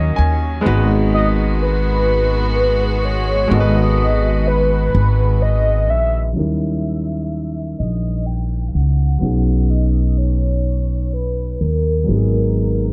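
A dark, softly filtered sound with light reverb frames this short cut from a slow, sultry R&B piece in G# minor, moving at 42 BPM in a straight 6/8 and carrying a yearning mood. A velvety, warbling synth lead with a vintage, detuned sawtooth character carries the melody throughout, coloured by chorus, phaser, vibrato, plate reverb and tape echo. A clear concert grand piano with deep bass and long sustain accompanies it, opening with a brief fill, while a bowed studio string section with a reedy, gut-string period tone holds sustained chords until 6.3 seconds. Underneath, a pizzicato upright bass sits up front with a woody, growly steel-string tone. The harmony moves from D#m7 and G#m7 into a second section at 6.4 seconds, where a filter sweep runs across D#7b9 and B6 before settling on G#m9.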